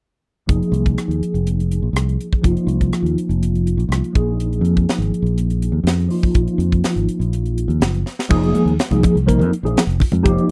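A straight 4/4 groove from a crisp fusion drum kit, with its punchy kick, high-tuned snare, rim clicks, hi-hat and crash, drives this nocturnal, intense electric jazz fusion excerpt, as a fingered electric bass sits up front beneath a mellow tine electric piano tinged with phaser, moving from Fm7 to Bb7sus4 and back after a drum fill at 8.1 seconds, with thick-skinned congas joining in the background at 8.5 seconds, all in a dry, close 1970s-style studio sound with light reverb.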